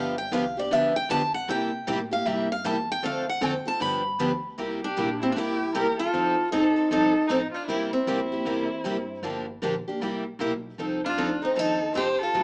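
An up-front picked steel-string acoustic guitar with finger squeak and plate reverb carries the melody through this lively, charming jazz manouche swing, backed by two more picked acoustic guitars (one bright and full-bodied, the other fresh-stringed with its own squeak) and a woody, growly pizzicato upright bass in the background, while an expressive bowed violin with vibrato and portamento joins at 4.8 seconds on a second line, all in a rough home-demo mix with a small-speaker sound and a wet room.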